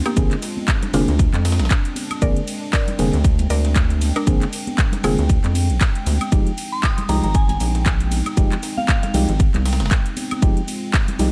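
Deep house at 117 BPM with a 16th-note swing, moody and smooth, this short excerpt under vinyl crackle moves from Bb9 to Fm9 around a punchy, up-front electronic kick, a rubbery, hollow square bass and sidechain-pumped stabs from a round, mellow FM electric piano carrying chorus, cassette tape and delay. A house kit with metallic hats, handclaps, ride and woodblock sits beside very quiet soft-handed congas, a gritty pitched-up sampler-style breakbeat kit, and a deep analog pad pumping in the background. A woody, mallet-like pluck with chorus and delay carries the melody until 5.4 s, and a pure, gentle synth bell takes over from 6.7 to 9.1 s, all in a dry mix with little reverb.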